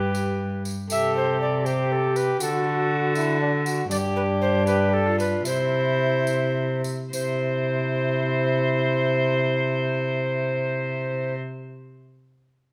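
Stately and courtly, this fragment of a Renaissance-style consort dance in a straight 6/8 is led by an airy, chiffy alto recorder with a crisp attack. Beneath it sit a distant, reedy bowed viola on the second line, a vintage-sounding trombone with light vibrato, and an up-front, dark gut-string cello on the bass. A jingly, close and dry tambourine adds sparkle until 7.4 seconds, the music slows from 3.1 to 7.1 seconds before a new section begins, and all of it rings in a moderate recital hall.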